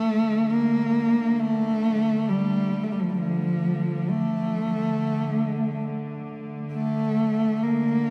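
Solemn and longing, this brief excerpt of a Caucasian folk lament unfolds in free, rubato time as a single bowed cello sings an expressive, vibrato-rich melody up front with soft attacks and sliding portamento, while a bright, earthy chamber string section holds a low bowed drone beneath it, all bathed in the long, wet reverb of a cathedral-like space.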